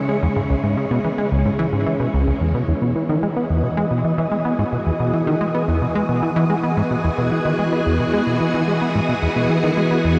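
Dark, warm production bathes this cut from a longer piece of ambient, sequencer-driven space music in a huge reverb with an 8.0-second decay, setting an expansive, cosmic mood at 110 BPM in a straight 4/4. A punchy, funky analog bass riff with a sawtooth filter pluck, cassette-tape coloring and tape echo sits up front from 0.1 seconds, beside swirling, vintage string-machine chords shaded by ensemble chorus and phaser, while a breathy, wind-like noise texture hovers high above. The harmony moves from C#m to E at 2.7 seconds in E major.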